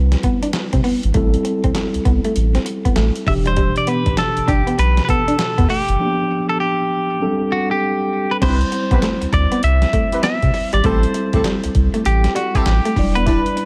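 A swung 99 BPM new jack swing groove in 4/4 rides on a gritty, pitched-down, sampler-style boom bap kit with a thumpy kick, handclaps, hi-hat and crash, under a deep, saturated sub bass sitting up front, in this slick, punchy R&B fragment. A mellow tine electric piano provides the accompaniment while a lo-fi, slightly broken-up guitar through a small old amp plays a twangy riff bathed in lush chorus, and from 3.3 s a clean, picked electric guitar carries the melody up front. After a break at 6.0 s, a tight, jazz-style horn section with light vibrato adds smooth stabs in the background from 8.4 s, all set in digital ambience.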